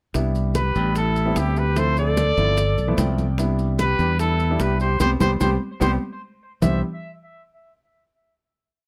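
A lively, sophisticated Afro-Cuban jazz piece in straight 4/4 at 148 BPM rides on tight, high-tuned bongos in steady eighths with hand bell, quiet congas with slaps and open strokes, grainy maracas, and a growly, up-front fingered electric bass playing a tumbao that anticipates the chords. Over syncopated rootless stabs from a worn concert grand piano moving through Am9, Dm9, G13 and Cmaj9 in C major, a clear trumpet with light vibrato and analog delay enters at 0.6 seconds with a motif-based melody. A breathy, distant flute shadows it mostly in thirds, with a piano fill at 2.8 seconds and a band accent at 5.0 seconds before a final chord at 6.6 seconds, all captured with close, detailed microphones and light reverb.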